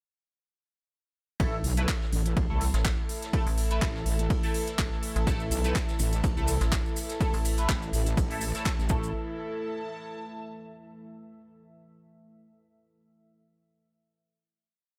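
Bass house at 124 BPM with a swung, gritty and bouncy feel, where a punchy overdriven four-on-the-floor kick, crisp garage hats and claps, a dark-toned brush breakbeat loop and grainy maracas drive a heavy detuned wobble bass and a metallic FM bass under nasal band-passed syncopated chord stabs, a deep moody pad entering at 3.0 seconds and an airy, breathy, warbling pad that rings on alone to the final note at 11.0 seconds.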